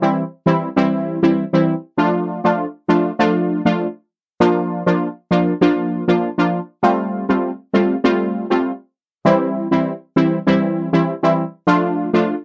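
A straight 4/4 dancehall pulse at 99 BPM carries this sultry, tough fragment cut from a longer piece, where a lone synth brass stab, brassy and punchy with a detuned sawtooth bite, filter-pluck snap and phaser-tinged chorus sheen, sits bright and up front from 0.0 to 12.4 seconds over C, Dm and Bb before shifting to Fadd9 at 6.8 seconds, all wrapped in light reverb and the worn, warbling pitch drift of old cassette tape.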